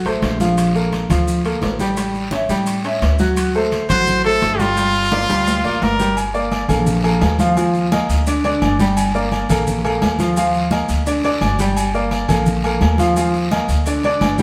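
A fast 172 BPM salsa groove in G minor drives this passionate, danceable excerpt, where woody, thumpy pizzicato upright bass and a clear, worn grand piano up front sit among damped congas, ringing metal-shelled timbales and agogo bells, a raspy guiro and grainy distant maracas, while a bright, close-miked trumpet with light vibrato comes forward from 3.9 to 6.2 seconds over a drum fill before the band moves into a cycling Gm, Bb5, Ebsus2, Dsus4 progression, all wrapped in a live stone-room reverb.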